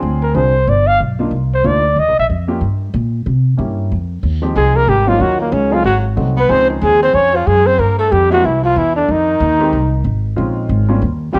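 A home recording on cassette, with spring reverb and a small room around it, gives this cut from a longer piece an intimate, late-night haze. It is small-group swing and bop in 4/4 at 186 BPM, cool in mood. A woody, thumpy pizzicato upright bass sits up front, while a baby grand piano accompanies with short sustain and audible action noise. A breathy flugelhorn, tinted by cassette tape, carries the melody with light vibrato and scooped notes, playing a brief phrase from 0.2 seconds and returning at 4.6 seconds. At that point a distant, roomy baritone saxophone enters in the background with a subtone second line. The harmony moves through chords such as Dm7b5, Ebm9, Ab7b9 and Dbmaj9.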